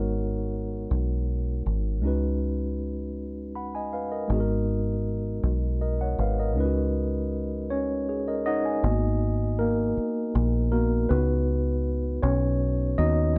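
Late-night and yearning, this slow six-eight R&B excerpt in G# minor at 53 BPM pairs a mellow, clean tine electric piano with a dark, round, foam-muted fingered electric bass, both up front in a dry, close 1970s-style studio sound, cycling between G#m9 and C#9sus4 until the electric piano takes a solo from 8.8 seconds.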